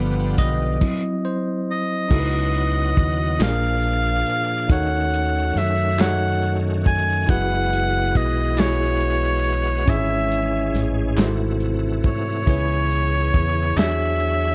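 A slow 6/8 pulse at 46 BPM, counted in dotted quarters and played straight, carries this solemn, fervent gospel passage in C# minor, cut from a longer piece. A round, punchy fingered electric bass sits up front beside a dry, muffled soul drum kit with a tight kick, medium-tuned snare, dark cymbals on crash and hi-hat, and a rolled-off top. A clean, bell-like tine electric piano leads the opening, while a bright tonewheel organ holds full, shouting chords in the background, lightly overdriven with chorus vibrato and a slow rotary speaker, and a muted, nasal French horn section briefly adds metallic, stopped chords before dropping out at 0.8 seconds. A present oboe in classical style enters at 1.7 seconds with a light-vibrato solo melody, and distant, crisp group handclaps join from 3.4 seconds. The harmony is rich with extended and altered chords such as C#m11, D#m7b5, F#9sus4 and G#7b9b13, all set in a small room with light reverb and a dark, warm production.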